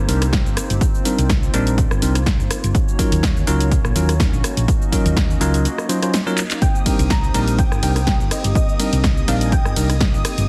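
A 124 BPM groove in 4/4 with a light 16th-note swing drives this moody, late-night deep house excerpt in C minor, built on a punchy, tape-warm electronic kick and an analog drum machine of snare, handclaps, rim click, hi-hat, ride cymbal and cabasa, both carrying a small-room character. Underneath, a dark, round hollow-body electric bass and a hollow, flute-like soft pad with chorus hold the harmony as it moves from Cm7 to Ebm7 and back, both pumping against the sidechain. A bright, bell-like tine electric piano adds clean stabs trailed by tape echo, also ducking with the kick. After a short break at 5.7 seconds and a drum fill at 6.4 seconds, a gentle pluck melody enters at 6.6 seconds, its filter-shaped notes roughened by vintage 12-bit sampler grit and repeated through analog delay, while a shimmering string machine violin texture sits high in the background. The mix has light digital ambience and a heavily compressed, radio-like sheen.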